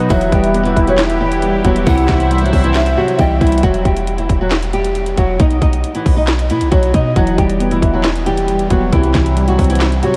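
Soaked in a huge, dreamy reverb, this eerie, dark half-time trap excerpt sets a fingerpicked flamenco guitar with finger squeak up front over a soft, felt-muted upright piano with audible action noise, a deep, boomy clean 808-style bass, and an electronic trap drum kit of hard-clipped kick, sharp snare, metallic hats and handclaps carrying vintage 12-bit sampler grit, while a sweeping resonant pad of detuned sawtooth brightness and a breathy, hollow bamboo pan flute in the background drop out at 3.6 s, and the piano drops away from 3.7 s until 7.2 s.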